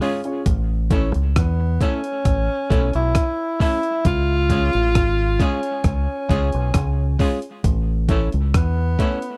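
Roots reggae with a laid-back, uplifting mood, heard in a short cut from a longer piece, opening on a brief drum fill before the groove settles in. The sampler-style kit sits up front with a gritty, thumpy kick, hi-hat and rim click, its compressed sound re-recorded in a small room, while the deep dub fingered bass enters at 0.5 seconds, round and dark with tube saturation. An electric guitar at the edge of break-up plays accompaniment with a twangy, slightly broken-up tone, coloured by tremolo and tape echo, and a dark upright piano adds mellow, woody stabs with long sustain. From 1.4 seconds a tenor saxophone carries the solo melody, warm with light vibrato and tape echo, sounding distant and roomy yet placed up front. The harmony moves from A to C# and back to A, and the whole sits in a dry, close studio sound in a 1970s style.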